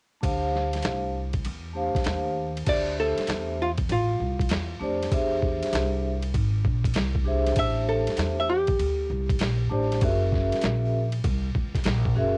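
Lo-fi home cassette sound with light reverb frames this cool, nocturnal jazz-hop fragment at 98 BPM in D minor with swung sixteenths, where a gritty, compressed, pitched-down boom bap sampler kit with a thumpy kick, a woody, growly pizzicato upright bass and a mellow, airy soft-mallet vibraphone with slow motor vibrato each start at 0.2 seconds, before a dark, clean, picked hollow-body archtop guitar carries the melody from 2.7 to 9.7 seconds over chords moving from Dm9 through E7alt and Am7 to F#9.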